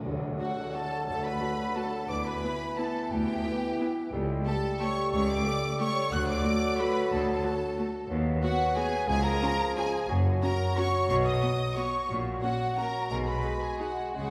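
A round timpani stroke and a dark tam-tam open this elegant, festive orchestral ballroom waltz, cut from a longer piece, as the band strikes an accent at 0.1 s before settling into a rubato lilt in three. Expressive, vibrato-rich violins carry the melody up high alongside a pure, crisp-edged silver flute in the same register. A second, more distant violin section and a soft-attacked clarinet add inner lines, a mellow bassoon and smooth violas fill out the accompaniment, vintage-toned French horns hold sustained chords, and lush cellos and rich double basses anchor the bass, while the harmony modulates at 8.1 s, the timpani returns at 14.2 s, and a reverberant concert-hall ambience is heard from further back in the room.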